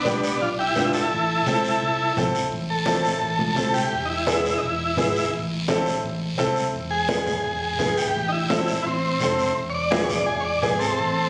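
A driving straight 4/4 cumbia groove at 170 BPM in A harmonic minor sets a fiery, passionate mood, as a buzzy, heavily vibratoed vintage combo organ with plate reverb leads up front and takes a solo from 2.5 seconds, over a brilliant, woody upright piano, a round, amped fingered electric bass, distant low-tuned congas in the background and a raspy, close guiro, all moving from G into alternating Am and E chords in a roomy studio space captured on a phone.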